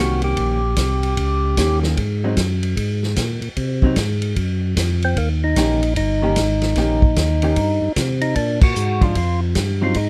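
A swinging 4/4 groove at 150 BPM drives this greasy, soulful soul jazz organ trio fragment in Eb mixolydian, cut from a longer piece. A vintage drum kit with dark cymbals, a medium-tuned snare and a tight kick sits up front, using crash, hi-hat, kick, ride and snare. Underneath, a tonewheel organ carries the bass line with a full, lightly overdriven tone, chorus vibrato, key click and slow rotary speaker. A clean, picked hollow-body electric guitar adds dark, compressed accompaniment, while a fat, percussive tonewheel organ with third harmonic percussion, light overdrive and a slow rotary speaker states the melody, dropping out at 1.8 seconds and returning at 5.0 seconds. The harmony moves through Eb7, Ab7 and Bb7, the band hits an accent at 8.6 seconds, and the close, detailed sound carries little reverb.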